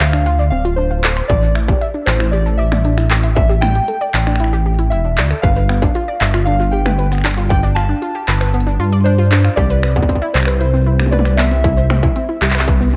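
A dark, detuned saw bass sits up front, its deep, rumbling tone beating against itself from the first moment. This eerie, intricate IDM piece moves in a straight 4/4 over a Dm7 to A7sus4, G7 and Cmaj7 progression. Above the bass, warbly lo-fi synth keys carry a mellow, nostalgic melody with a filter sweep, chorus and digital delay. A dusty pluck with a noise layer and ring modulation spins short, decaying arpeggios through the same chorus and delay. An industrial drum kit of cabasa, finger snaps, handclaps, crisp hi-hat and toms runs throughout, and a distorted electronic kick joins at 1.3 s, both tape-tinged and re-recorded in a large room. The dark production carries light reverb, digital ambience and a faint mains hum, and this cut from a longer piece stops at 13.0 s.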